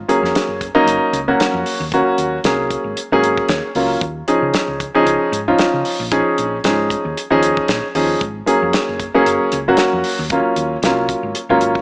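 A dark, round hollow-body bass opens this funky, intense electric jazz fusion excerpt at 114 BPM with a light sixteenth-note swing, joined almost at once by a smooth, vintage-toned grand piano with short sustain and a damped, dry 70s drum kit with a tight kick, medium-tuned snare, hi-hat and a rolled-off top. The piano and drums sit up front, while the amped bass stays lower in the mix, and the harmony moves from Ab9sus4 to Eb9sus4 at 4.0 seconds and back to Ab9sus4 at 8.2 seconds. The piano slips in a brief fill around 3.2 seconds, and a moderate plate reverb with small-room ambience gives the whole a small-speaker character.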